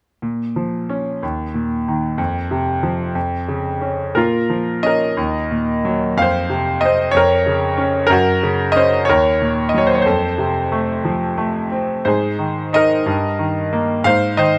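A bright concert grand piano plays alone from 0.2 seconds, opening a reflective, dark classical passage in Bb minor, cut from a longer piece, at a slow 61 BPM in 6/8 with a freely breathing rubato feel. Its range runs from a deep Eb2 bass up to F5, and the close, detailed miking puts the natural-sounding instrument up front with a touch of light reverb. Around 4.2 seconds a second section begins, moving through Gb and Ebm7 before settling on Ab chords as the passage closes at 14.6 seconds.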